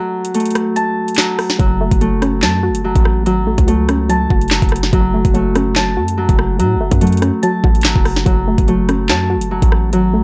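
A half-time drill groove of knocking kick, sharp snare, metallic hats, handclaps and rim clicks sits up front in this dark, ominous hip hop excerpt, with the electronic kit entering at 0.2 seconds. A ringing, fingerpicked Celtic harp plays arpeggios through a low-pass filter and digital delay from the start, and at 1.6 seconds a punchy, heavy 808-style bass arrives alongside a warbling, lo-fi detuned pluck with chorus and a filter sweep. The mix is dry, with little reverb.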